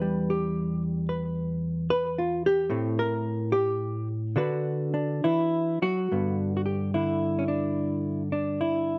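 Solo jazz in G major, playful and swinging, with a loose rubato feel around 67-76 BPM in 4/4. A dark, clean, fingered hollow-body electric guitar sits up front with compressed tone and a slapback echo, soloing over Em7, Am and D69 before settling on G6 as a new section begins at 6.1 seconds. The sound is dry and open-air, recorded outdoors with little reverb and a top end that stops at 10.8 kHz, and the clip is cut from a longer piece.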